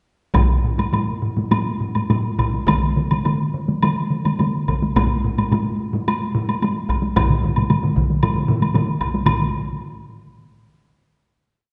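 Japanese traditional taiko ensemble music in 4/4 with a straight, ceremonial and driving feel, speeding up from 102 to 123 BPM across a brief whole piece. Solo taiko drums with heavy sticks and a vintage, band-limited tone play taiko phrases, alongside a heavy-stick taiko group in a small room, a hard-stick taiko group up front, and a woody woodblock repeating its pattern. A close, dry hard-stick taiko ensemble plays a repeating pattern, one taiko group enters at 2.7 s, everything sits in a wet recital hall reverb, and a final hit lands at 9.3 s.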